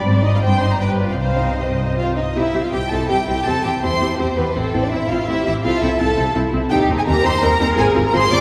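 An up-front violin section carries the melody from 0.3 s, its bowed tone close and smooth, lit with vibrato. It leads a quick, urgent classical-period movement for string orchestra at 166 BPM in 3/4, played with a rubato feel in C major and tuned to A4 = 437 Hz. A second violin section plays a supporting line from the start with a warm, even sound, while the violas fill in the accompaniment with expressive, rich vibrato. Cellos and double basses share the bass: the cellos sound close and warm, and the basses are focused and lush with a smooth top. The harmony moves restlessly, passing through Ab, G7 and C minor early on before settling onto C at 2.4 s, then drifting through A minor toward C minor over Eb and F minor over Ab near the close. A wet cathedral reverb with a 5.3 s decay places the ensemble in a large church or concert hall, and the clip is cut from a longer piece.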